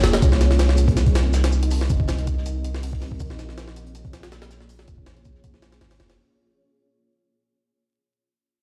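A raw, nostalgic drum and bass excerpt at 161 BPM opens at once with a gritty, pitched-up jungle sampler kit up front, its thumpy kick and high-tuned snare sounding compressed and tape-warm, over a deep, mellow 808-style bass holding long sine notes. A cloudy, detuned granular pad carries Cm7 and then Bbm7 through a filter sweep, its blurred tone softened by its own reverb. Far in the background, a roomy acoustic soul kit with a rolled-off top adds hi-hat, shaker and snare, while vinyl crackle and stone-room reverb evoke a big sound system in a bare room as the 6.2-second clip fades out.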